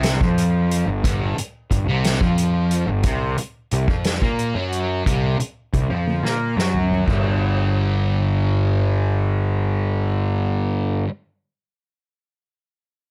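This short cut from a longer psychedelic rock piece opens with a dark, double-tracked fuzz guitar riff, distorted and coloured by a phaser, sitting up front alongside a round, punchy bass with overdriven fuzz. The tempo is a slow 60 BPM counted in dotted quarters in 6/8 with a straight feel, and the key is G minor, giving the music a trippy, hypnotic mood. A soft-mallet drum kit plays throughout the opening, its medium-tuned snare, punchy kick, toms, hi-hat and crash cymbal sounding acoustic yet distant and roomy. The harmony moves from G7sus4 to F#maj7#11/B# at 3.0 seconds, and a drum fill at 6.1 seconds leads into a new section at 7.1 seconds, where the chord settles on G5 and the drums drop away. Guitar and bass carry on together until the cut ends, and the overall sound is dry, with little reverb.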